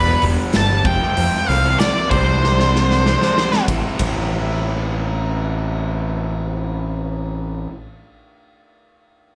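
Heard as a live gig through a club PA with club reverb and muted highs, this swaggering, brooding classic rock passage in A minor at 95 BPM opens with a dark, fuzz-toned octave-fuzz lead guitar solo up front until 3.6 s, over a raw, lo-fi garage guitar riff and a growling, round, punchy picked electric bass, while a huge arena drum kit with a pumping room sound, bright cymbals and a medium-tuned snare plays a fill from 2.4 s before stopping at 4.2 s, as the chords move from G to F to Csus2 and land on Am.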